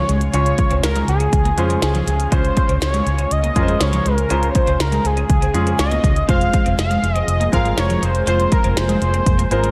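1980s-style pop in Db major at 121 BPM, this short, romantic and uplifting cut moves in a straight 4/4 from a Dbmaj7 chord to Fm at 6.3 seconds. Up front, a bold, nasal octave-doubled lead carries the melody with a retro sawtooth edge, a fast attack, vibrato and a chorus effect. Beneath it, a clear concert grand piano plays polished accompaniment with deep lows and short sustain, while a very quiet ensemble organ-string holds soft-attack chords that evolve with a vintage, organ-like tone. A twangy twelve-string electric guitar picks a compressed riff in the background, its bright, clean sound thickened by analog chorus. The foundation comes from a dark, round, foam-muted fingered electric bass and a minimal click drum kit, which enters at 0.1 seconds with a deep kick, tiny snare and clicky hats, all overdriven and bathed in gated reverb. The whole mix sits in light digital ambience, with some lossy compression artefacts audible.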